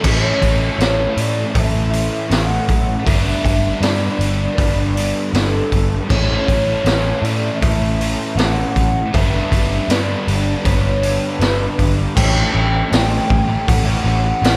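A dreamy, blissful shoegaze and dream pop cut from a longer rock piece, moving in a straight 4/4 between A and G6 before landing on A7 at 12.2 seconds. A soft, pure sine lead with vibrato, chorus and slapback echo carries the melody over a dark, hollow-body semi-hollow guitar treated with reverse reverb, with a bright double-tracked distorted guitar that drops out at 12.2 seconds and a lo-fi garage guitar with ensemble chorus sitting in the background. Underneath, a round, foam-muted picked bass and an up-front, gritty small-room drum kit with a boomy kick and rolled-off top anchor the dark, dry production.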